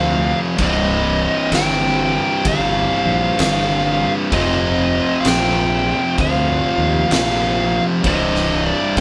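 A fuzz guitar riff and a fuzz lead guitar melody open this brief excerpt of stoner and doom metal together with a fingered electric bass, all sounding from the start over an F5 chord before the harmony turns to C minor. The drums enter at 0.6 s, an oversized low-tuned kit with a punchy kick, fat snare and dark ride cymbal set in a bright stone room that pumps around them. The mood is ominous and brooding at a slow 64 BPM in 4/4, with a moderate swing on the eighth notes. The riff guitar sits low, double-tracked, compressed and up front with a bright, distorted bite, while the bass beneath it is overdriven and growly, blending direct and amped tones. Above them the lead guitar's murky, distorted melody hovers high, and the chords move back to F5 at 4.3 s and return to C minor at 8.0 s, all in a light reverb that suggests a band playing live in one room.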